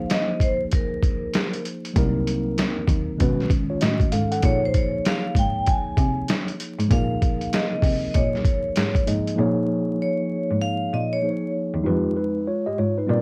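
Jazz-hop with a cool, nocturnal mood, this excerpt from a longer piece opens with a vibraphone melody over a mellow, up-front tine electric piano and a muffled, pitched-down sampler-style drum kit with a thumpy kick and vintage 12-bit grit. A veiled, bowed muted cello enters on bass at 2.0 seconds with soft attacks, vibrato and portamento, while the ringing, metallic vibraphone carries a slow motor vibrato. The drums drop out at 9.4 seconds, leaving the cello, electric piano and vibraphone in a small, dark room framed by vinyl crackle.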